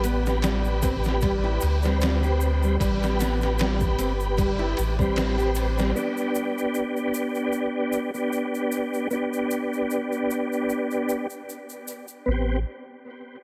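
A swung 76 BPM trip hop groove in A minor, cut from a longer piece, sets a dark, smoky mood as a muffled, overdriven sampler-style kit with thumpy kick, ride and snare, a round, deep dub sub bass and fingerpicked nylon-string guitar arpeggios through digital delay play through the first 6.0 seconds, while a bright tube shaker and a smooth tonewheel organ with fast rotary speaker, chorus vibrato, tremolo, tape echo and 12-bit sampler grit carry on over the move from Am9 to G/B, the bass returning briefly at 12.3 seconds, the mix framed by light reverb and a heavily compressed radio sound.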